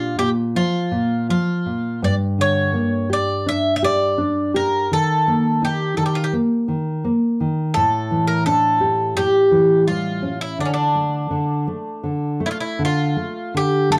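The rhythm moves freely in rubato around 84 BPM in 4/4, giving this fado-style ballad in D harmonic minor a passionate, mournful sway. An Irish bouzouki carries the melody from C#4 to E5, its picked double strings ringing with a metallic edge that sits up front. Beneath it, a nylon-string guitar supplies thumb-plucked accompaniment from G2 to G4, its deep classical tone dark and full-bodied, also placed close to the listener. The harmony travels from Bb5 through Gm and Eb5 to an A7sus4 at 7.7 seconds, resolving through A7 onto Dm at 10.6 seconds. Both instruments play throughout this 14-second passage cut from a longer piece, framed by moderate studio reverb and a warm, shadowy production.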